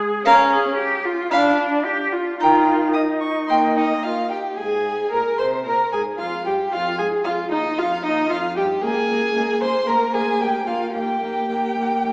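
Heard from further back in a reverberant recital hall, with a small-speaker quality, this string quartet passage is cut from a longer, quick classical-period movement in Ab major at 112 BPM in a straight 4/4. The mood is cheerful and graceful. The cello opens at 0.0 seconds with soft attacks, vibrato and expressive portamento, and the viola joins at 0.2 seconds with a focused, smooth-topped accompaniment that sits up front. Both violins enter at 0.3 seconds: the first carries the high melody with a rich, vibrato-laden tone and a clear presence, while the second shapes an expressive inner line with vibrato and gliding portamento. After an opening phrase built on Bbm/Db, Dmadd11 and Eb, a second section arrives at 4.6 seconds on Ab, moving through Fm, Bbm7/Db and Bb/D before settling on Eb.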